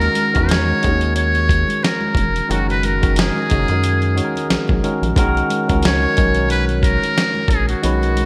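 A breathy, buzzy trumpet with a metal mute carries the melody up front in this smooth, warm R&B and neo-soul excerpt at 90 BPM in B major, riding a gentle 16th-note swing. A barky tine electric piano, bathed in lush chorus, moves through D#m7, F#69 and B69 over a rubbery, hollow square bass. A gritty, compressed sampler-style drum kit with a thumpy kick and gated reverb sits up front, very quiet congas add soft-handed texture, and the bright 1980s-style digital production is wrapped in a moderate plate reverb.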